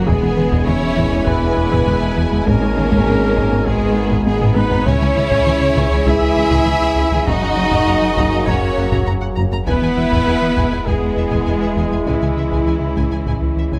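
A taiko ensemble struck with hard sticks drives a straight 4/4 pulse from the background, with a short drum fill at 4.3 seconds, in this brooding, tense cinematic cue that blends orchestra and electronics. Beneath it, a round analog bass riff and a tight, detuned sequenced synth arpeggio with chorus and phaser churn along, joined by a deep, clean sine sub bass, a mellow tuba, a distant double bass section and a rich cello section that together anchor the low end. A brassy bed of sustained chords comes from a clear trombone section and a dark, roomy French horn section set back in the hall. The melody is carried by a mellow duduk with vibrato, scooped notes and delay, together with a soft-attack violin section gliding with portamento, while a second violin section with a smooth top plays a supporting line and an intense, close viola section fills in the accompaniment. The chords move from E through G#m, C#m and F# before returning to E and C#m, all framed by a moderate scoring stage reverb and detailed close microphones in this cut from a longer piece.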